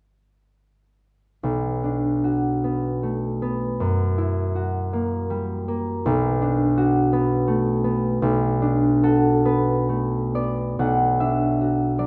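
A bright, ringing, thumb-plucked concert harp sits up front from 1.4 to 12.1 seconds in this gentle, wistful classical solo piece, cut from a longer work, moving with a 6/8 rubato through a moderate concert-hall reverb over a faint mains hum.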